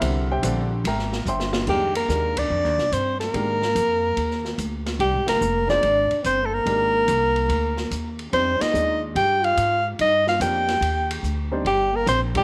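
Modal jazz in F dorian, swinging at 144 BPM in 4/4 with a spiritual, hypnotic mood, heard as a short cut from a longer piece. Upright piano, pizzicato upright bass on gut strings and an acoustic drum kit open on a C7 chord, the piano slightly detuned with short sustain, the bass woody and thumpy, and the kit carrying dark cymbals, a medium-tuned snare and a boomy kick. A drum fill at 1.3 seconds leads into the main passage at 1.7 seconds, where the harmony settles on Fm11 and a mellow soprano saxophone takes the melody up front, its subtone colored by light vibrato. Behind it, a growling trombone plays a second line in the background, breathy and raspy with scooped notes. Band accents punctuate the groove at 2.3, 5.2, 8.5 and 12.3 seconds, and a moderate echo chamber reverb with small room ambience gives the ensemble a natural studio feel.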